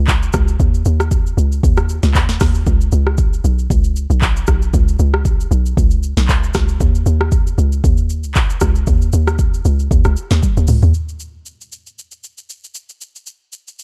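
A hollow, bouncy log drum bass with a fast attack, decaying FM tone and noise layer opens this soulful amapiano cut at 116 BPM with a swung 16th-note feel, joined at 0.1 seconds by an up-front, tape-warm electronic drum kit of deep kick, sharp snare, smooth hi-hats, handclaps, rim clicks, shaker and toms, and after a drum fill from 10.4 seconds the bass stops at 10.9, leaving the drums alone in a dark digital ambience.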